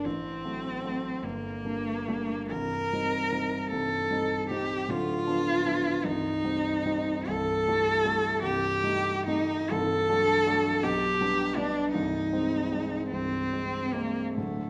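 A generous recital-hall reverb, with a decay of about 1.4 seconds, surrounds this intimate romantic classical duo for cello and grand piano. The mood is tender and serene, moving slowly at around 45-55 BPM in dotted quarters in 6/8, with a flexible rubato feel. Up front, a single bowed cello sings the melody from A3 to Bb4 with a rich tone, soft attacks, expressive vibrato and portamento slides between notes. The concert grand piano accompanies with a warm sound and deep bass reaching down to C1. Both instruments play throughout the 14.7 seconds, passing through shadowy harmonies such as F#dim/A, Gm, Cm7 and D7/C before settling on Ab/C. The passage is cut from a longer piece.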